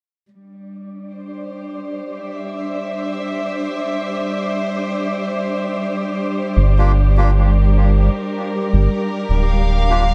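A lightly reverberant studio sound holds this hazy, meditative ambient fragment, which opens as a bowed string section fades in with soft, intimate sustained chords over Cadd9/G, joined at 1.0 seconds by an airy, wind-like tuned noise texture. The harmony shifts to Gm7 at 6.6 seconds, when a deep, round analog bass arrives up front with tube saturation. A reedy, nasal melodica then adds short stabs trailed by dub echo.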